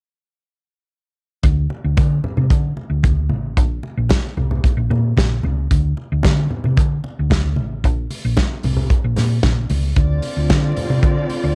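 Disco at 112 BPM in a straight 4/4, danceable and joyful, with a home-cassette feel in a small room. A round, hollow-body fingered electric bass and an up-front soul drum kit, with its tight kick, medium-tuned snare, hi-hat and rolled-off top, drive a D5 figure that alternates with chordless passages, while low-tuned, soft-handed congas sit distant behind them. Near 10.0 s a dark, lush bowed string section enters on a Dm7 chord with expressive vibrato just as this short cut from a longer piece ends.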